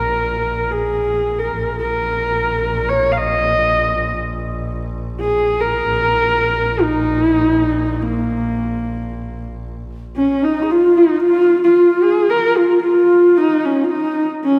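Solemn and vast, this excerpt of Mongolian folk music unfolds in a steady, straight 4/4, cut from a longer piece. A horsehead fiddle carries the melody from the start, its bowed horsehair strings giving a dark, husky, woody voice with vibrato and portamento, placed up front with a smooth top. Beneath it, a bowed double bass holds a low drone until 10.2 seconds, its tone clear and boxy with an airy, intense bow and a touch of vibrato. At that point a low xiao enters as a second line in the background, its end-blown bamboo sound bright and breathy, tongued and expressive with vibrato. The whole performance sits in a church or concert hall, wrapped in a long, wet reverb that deepens its spacious, solemn feel.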